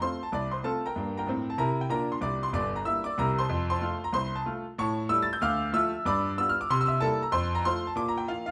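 A bright grand piano opens this short stride jazz clip on an F chord and carries the whole 8.5 seconds by itself. The mood is exuberant and swinging, with a swung eighth-note feel in four. The piano has a brilliant yet slightly worn character and sits up front, ranging from deep bass notes at G1 to sparkling highs at A6. The harmony moves from F through C7/G, back to F, then through A7, Dm, G7 and C7 before resolving home and landing on a Bb5 at 8.0 seconds. A large studio reverb gives the instrument a wet, roomy bloom, capturing the feel of a live performance in one space.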